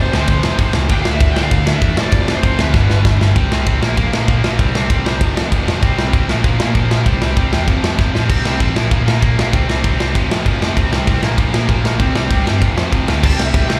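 Upbeat and rebellious, this punk rock excerpt charges along at 194 BPM in a straight 4/4, captured as a live gig heard through a club's PA. A double-tracked, bright distorted guitar drives the riff throughout, overdriven with slapback echo, while a growly, punchy overdriven bass holds down the low end beneath it. The big acoustic drum kit sits up front with a punchy kick, medium-tuned snare, crash and ride, and fills at 2.7 seconds and again around 8.0 seconds. A dark, picked lead guitar through a small cranked amp carries a melody over the opening three seconds and returns briefly at 13.2 seconds, also treated with overdrive and slapback echo. The harmony moves through power chords around F, D, C and Bb, shifting from an opening passage into a repeating cycle from 3.4 seconds onward.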